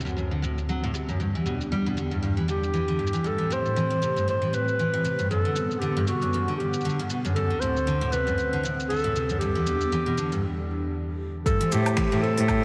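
A dreamy, reverb-soaked cathedral haze surrounds this wistful, delicate folktronica excerpt in A dorian at 117 BPM with a light 16th-note swing, where a woody, full-bodied picked steel-string guitar arpeggiates up front over a smooth, detuned sawtooth pad with chorus, while an organic electronic kit of finger snaps, shaker, woodblock and crisp overdriven hats ticks softly beneath. From 2.5 s a mellow, soft-attack clarinet carries the melody with analog delay through chords moving from D7 and Em7 to Am7 and Gmaj7. After a brief break, a deep overdriven electronic kick arrives at 11.5 s and a biting, nasal cello with vibrato enters close and intense on the bass at 11.7 s.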